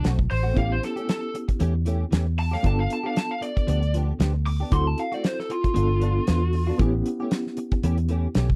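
Straight-eighth soul blues with a rollicking, laid-back feel, this dry, close 1970s-style excerpt sets a dark, overdriven lead guitar solo with slapback echo over a worn, slightly out-of-tune reed electric piano shimmering with fast tremolo, compressed clean guitar stabs treated with ensemble chorus, a round, foam-muted fingered bass and a damped drum kit with a fat snare and tight kick, the bass and drums sitting up front while the solo drops out at 6.8 seconds.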